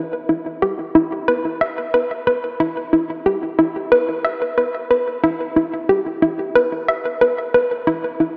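A lone hollow, bouncy square-wave pluck with a detuned, wave-folded edge and a sub-octave underneath sits up front for the full 8.4 seconds of this mysterious, hypnotic ambient fragment in E minor at 91 BPM, its fast-attack, short-decay notes moving between E4 and E5 through chorus and delay and a long, wet plate reverb that gives the mix its echo-heavy depth.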